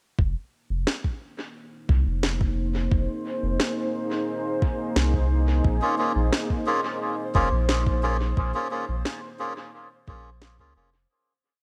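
Set in light digital ambience, this hazy, spacious ambient dub piece rests on a round, deep analog bass line, a soft, tape-warm electronic kick and a woody snare whose dub echo leaves a sparse beat; a detuned, moody pad of slowly shifting chords enters at 2.0 s, a reedy, nasal melodica adds off-beat chord stabs with dub echo from 5.8 s, and a faint, bubbling, resonant stepped-filter texture holds a high note from 6.5 s as the track fades out.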